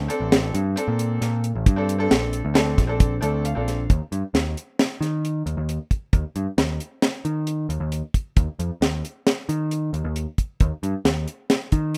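A rough home-demo mix with a touch of studio reverb frames this short cut from a longer progressive instrumental, set in 5/4 at 134 BPM with a straight feel and tuned to A4 = 435 Hz. The mood is intricate and driving, carried by a deep reggae drum kit that sits up front, dry and acoustic, with a high-tuned snare, a tight kick and hi-hat running from 0.1 seconds to the end. An overdriven picked electric bass, dark, round and direct, also sits up front and holds the low end from the opening through 12.0 seconds. A bright, brilliant grand piano with a natural tone adds accompaniment over a Bbmaj7 chord at the start and plays a fill from 3.0 to 3.9 seconds before it stops. From 3.9 seconds the harmony drops away to bass and drums alone for the rest of the piece.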